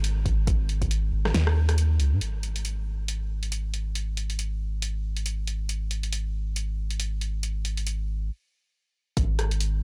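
A dry, gritty hardware recording with transformer saturation and little reverb frames this cavernous, meditative deep dubstep excerpt, cut from a longer piece at 138 BPM in 4/4 with a half-time feel and 16th-note swing. A soft dub sub bass sits up front from the start, its deep, round tone blending triangle and square waves with a fast attack and sustained notes ranging from G#1 to G#2. A deep house drum kit runs alongside it, offering hi-hat, rim click and a fat snare, layered and tape-warm after being re-recorded in a small room. An electronic kick drum with a deep, layered character, given the same small-room treatment, sounds briefly at 0.3 seconds and returns only at 9.2 seconds. After an opening passage, the music moves into a longer second section, and a stop from 8.3 to 9.2 seconds opens a pause before that final kick.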